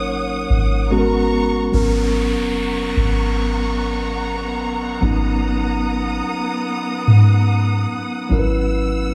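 Contemporary R&B at a slow 73 BPM in G# minor, this short excerpt from a longer piece feels longing and sensual, opening on D#m7/G#, resting on G#m11 and moving to F#7sus4/G# at 8.3 s. A mellow, clean tine electric piano sits up front beside a deep, round 808-style bass with a fast attack and a dark, decaying tone, while a lush bowed string section holds sustained chords with expressive vibrato and a smooth top. An electronic downlifter runs beneath from 1.7 s to 8.3 s, and a light small-room reverb gives the sound an intimate space.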